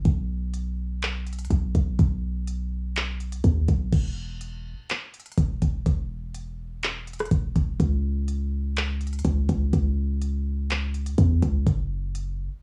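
Recorded at home on cassette, this short cut from a longer piece has a small-room ambience with little reverb, giving it a close, intimate feel. It is atmospheric cloud-rap in a half-time feel, floating and blissful in mood. A deep, boomy 808-style bass sits up front, its sine tone topped with a noise layer, a fast attack and a mellow decay, and it runs from the opening moment to 12.5 seconds. A smooth, electronic R&B drum kit, also up front and given a tape-warm cassette colour, brings a knocking kick, smooth hi-hats, handclaps, rim clicks and a crash cymbal. The music moves into a new section at 3.9 seconds, carrying its dreamy haze through to the end.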